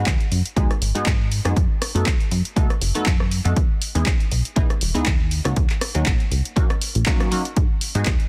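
A funky polysynth comp, sawtooth-edged with a chorused, phased shimmer and a moving notch, opens this nostalgic, groovy slice of filtered disco house at 120 BPM, alongside a plucky, dark analog bass, both pumping against the sidechain and dulled by a low-pass filter. At 0.1 seconds an up-front, tape-warm electronic kick arrives with a punchy analog drum machine of handclaps, rim clicks and pumping hi-hats, all set over a swung 16th-note feel in G# minor. The chords move through G#m7, B7, Emaj7 and D#m7 in a dry, dense, heavily limited modern mix, cut from a longer piece.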